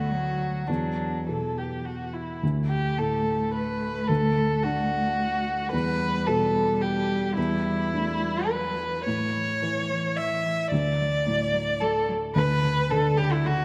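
A felt-muted upright piano, a single bowed violin and a single bowed cello begin together in this reflective, longing neoclassical excerpt, moving in 3/4 with a rubato feel. Up front, the rich, focused violin carries the melody with vibrato, while the cello's expressive second line sits in the background with soft attacks and portamento. The piano accompaniment sounds dark, mellow and intimate beneath thick felt, and a wet concert-hall reverb with an RT60 of 2.5 s surrounds the trio.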